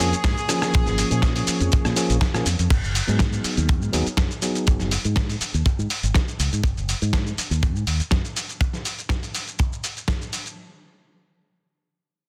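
A subtly swung sixteenth-note groove in four drives this sensual, groovy nu-disco excerpt, where a tight, up-front kick and a gritty, overdriven sampler-style kit of crash, hi-hat, rim click, shaker and snare back a punchy, envelope-filtered fingered bass, while a clean tine electric piano pumps through a combo amp with tape echo, a distant trumpet section with light vibrato sounds a brief opening line, and a very quiet, reedy chamber string section holds dark chords until 2.7 s, when the harmony moves from A#m7 to G#m7 under a touch of reverb and a dense, heavily limited master.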